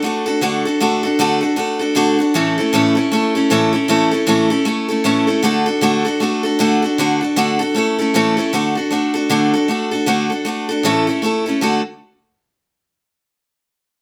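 A moderate studio reverb gives this live, one-room recording a natural sense of space, with the steel-string acoustic guitar sitting up front. The fragment is a retro, rowdy rock piece in D major at 155 BPM in 4/4, with the eighth notes swung and the tuning set to A4 = 442 Hz. The picked guitar carries the solo from the start until 11.8 seconds, ranging from A2 to A4. Its bright, fresh strings and audible finger squeak give it a lively, concert-ready presence. The harmony moves between D and A throughout, landing back on D at 11.6 seconds as the fragment heads toward its close.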